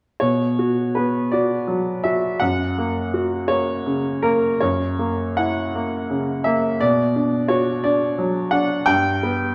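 A brilliant baby grand piano sits up front, playing alone in this romantic character piece, a short portion cut from a longer work. The mood is bittersweet and passionate, moving in 6/8 with free, rubato timing. The piano spans F#2 to G5 with a natural, bright tone, set in a recital hall whose reverb lingers generously around each phrase. The harmony moves from Bm to F# and F#7, returns to Bm, and reaches G near 8.9 seconds. The overall production leans dark and warm, framing the instrument's clarity in an intimate glow through to 9.5 seconds.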